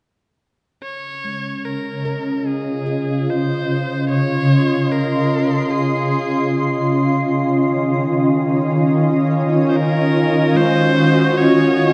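A slow, straight 4/4 pulse at 74 BPM underpins this serene, reflective ambient excerpt, which moves from Dbmaj9 to Ebm7 at 7.3 seconds. An up-front, ethereal pad with detuned chorus shimmer and a filter sweep holds sustained chords, while a very quiet handpan adds ringing fingertip arpeggios from 1.2 seconds. A single bowed electric violin fades in from 0.8 seconds with a rich, smooth vibrato melody and delay, all set in the long wash of a concert hall.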